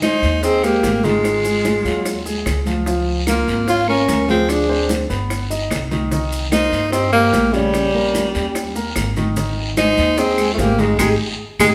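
A clear, close-miked tenor saxophone leads this Afro-Cuban jazz excerpt up front, carrying a jazz-style solo melody with vibrato. A breathy, mellow metal concert flute plays a tongued, straight-tone second line in the background, slightly unsteady, while a concert grand piano with natural tone and deep bass accompanies them. A dark, thumpy upright bass on gut strings, played pizzicato, enters at 0.2 seconds. Bright, high-tuned congas struck with hard hands sit compressed and saturated in the background, with round, low-tuned bongos and woody claves very quiet, a raspy guiro and grainy maracas. The mood is sophisticated and danceable at 148 BPM in a straight 4/4 in Ab major, the harmony passing from Abmaj9 through Dm7b5 and Cm7 before settling on Ab. The band plays live in one room under a large, wet studio reverb and lands a shared accent from 11.0 seconds.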